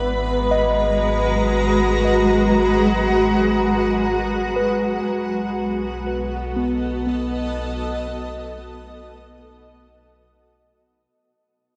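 The granular cloud pad stands out most, sitting up front with bright, blurred, slowly blooming sustained chords that carry their own built-in reverb. This is a serene, reflective ambient piece at 59 BPM in 3/4, cut from a longer work, moving from G#m9 to B7 at 5.1 seconds. Muted, felt-like synth keys play soft, intimate arpeggios in the background, their dark tone thickened by chorus and delay. Beneath them, a deep, round sub bass holds sustained low notes. The whole recording sits in a wet cathedral reverb and has the worn, warbling pitch drift of old cassette tape, dulling the top end, and it fades out from 3.0 seconds to the end at 11.1 seconds.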